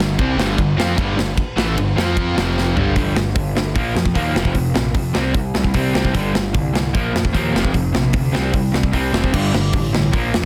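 A straight 4/4 pulse at 151 BPM drives this urgent, angry punk rock excerpt in G minor, led by an up-front acoustic drum kit with bright cymbals, a punchy kick and a medium-tuned snare, whose fill at 2.6 seconds tips the opening into the longer second section. Beneath it, a dark, round fuzz picked electric bass anchors a progression of power chords on G, F, B-flat and C. Tucked in the background are a distorted picked electric guitar, a warm overdriven semi-hollow guitar and a thick, double-tracked fuzz guitar that drops out at 3.0 seconds, all set in a dry, dense and heavily limited modern master.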